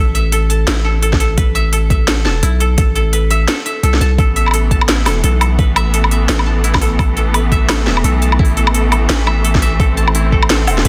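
A dense, heavily limited modern mix with light reverb carries this cinematic, tense half-time drum and bass excerpt. Woody koto arpeggios played with fingerpicks, roughened by vintage 12-bit sampler grit and digital delay, sit over a deep, up-front sine 808-style bass. A layered electronic kit of cracking snare, crisp hi-hats and woodblock swings alongside a thumpy, overdriven kick that drops out from 3.5 to 4.2 seconds, and at 4.2 seconds a lush bowed string section enters with sustained chords, vibrato and sidechain pumping.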